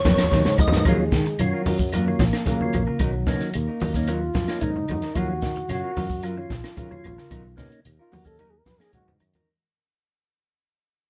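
Funky and defiant, this afrobeat excerpt in Eb minor at 111 BPM opens with a drum fill on a compact, punchy cocktail kit before a dark, vibrato-laden trombone takes an up-front solo with scooped notes from 0.9 seconds, over a round tonewheel organ turning through a slow rotary speaker, clean fingered guitar arpeggios and stabs, a growly fretless bass, ringing low congas, grainy shekere and woody claves in a live room with light reverb, as the whole band fades out on chords moving between Ebm9 and Bmaj9.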